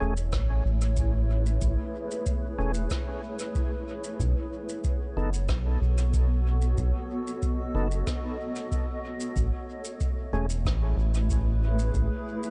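A round, up-front analog bass anchors this hazy, spacious ambient dub fragment at 93 BPM in straight 4/4, moving from Amaj7 to B7 at 4.2 s and back to Amaj7 at 9.4 s. A cloudy granular pad sustains blurred chords in its own reverb, while a smooth tonewheel organ with chorus vibrato adds dub-echoed stabs until 10.5 s. A dry, deep electronic kick and a natural-sounding shaker and rim click, also treated with dub echo, sit in a small room.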